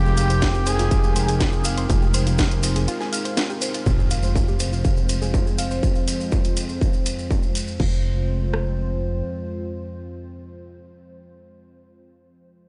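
Melodic techno at 122 BPM in F minor, driving and dark, this fragment of a longer piece opens with a smooth, vibrato-tinged synth lead and a fat, very quiet detuned polysynth for just over a second, over a deep, moody analog pad, a woody wave-folded pluck playing arpeggios, and a punchy sequencer bass pumping beneath a distorted, up-front kick with rim clicks, a cracking overdriven snare with hi-hat and crash, and grainy, distant maracas, before a faint electronic impact lands at 3.9 seconds and an evolving analog drone on F2 enters in the background at 5.3 seconds under light reverb.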